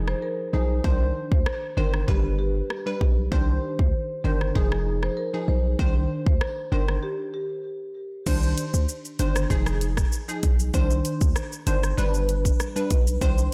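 Dancehall in C harmonic minor at 97 BPM, tough and bouncy, cut from a longer piece, with a punchy, layered electronic pop kit of kick, rim click, hi-hat, shaker and crash sitting up front beside a heavy, sine-based 808-style bass that hits hard and decays. A glassy, crystalline wavetable pluck with chorus, ring modulation, a moving notch and sidechain pumping carries the Fm7, Cmadd9 and G chords, while a woody, round marimba played with soft mallets offers a mellow melody in a diffuse ambient delay until 7.5 seconds. A break at 7.0 seconds drops the harmony before the pluck, bass and drums carry a second section from 8.3 seconds, all in light digital ambience.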